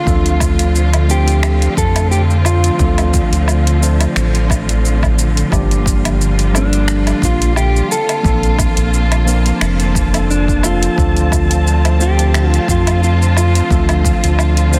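A round, deep analog bass sits up front in this wistful, relaxed sunset chillout excerpt at 88 BPM in D minor, its dark sawtooth-and-sine tone anchoring a gently swung 4/4 groove built from a punchy, overdriven electronic kick and a deep house kit of finger snaps, metallic hi-hats, shaker and woodblock, with soft clipping on the snare. A mellow, clean, fingered electric guitar carries the melody through tape echo, while a tine electric piano played through a combo amp adds accompaniment with digital delay. Lush bowed symphonic strings with vibrato and portamento sustain chords moving from Dm7 to Gm7, Bbmaj9 and back to Dm7 under light reverb and a dense, heavily limited modern master.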